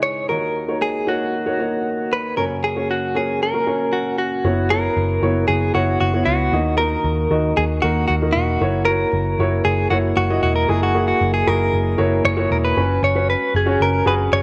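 A moderate echo-chamber reverb and a small room surround this hopeful, uplifting piano-driven pop cut at 116 BPM in a straight 4/4, moving through chords like D#m7, F#7sus4 and F#sus4. A woody upright piano with long sustain carries the accompaniment up front, while a clean, compressed, direct-recorded electric guitar picks the melody with a shimmering tremolo. At 4.4 seconds a dark, round, punchy foam-muted picked bass joins.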